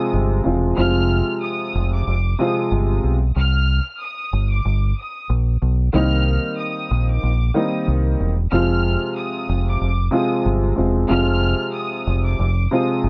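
Worn, warbling old tape with warbly pitch drift and light reverb gives this tough, reflective boom-bap hip-hop excerpt a faded, lived-in sound, moving at 93 BPM with a swung 16th-note feel over Fm, Cm7 and back to Fm. A deep, round fingered electric bass sits up front with a direct, amped tone, while a dark, woody upright piano with its own cassette coloring supplies mellow accompaniment. Set further back, a clear studio violin section carries a high, biting melody with light vibrato and a smooth top.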